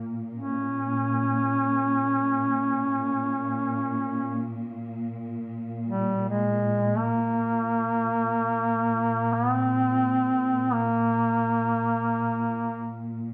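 Close, detailed microphones and light reverb frame this mournful, longing Caucasian folk lament in free time and Bb dorian, tuned to A4 = 435 Hz, as a lush, bowed studio string section holds a Bb2 drone with vibrato and portamento beneath a solo duduk, roomy and full of scooped notes with a slapback echo, that carries a vibrato-laden melody between G3 and Db4 from 0.3 s in this fragment cut from a longer piece.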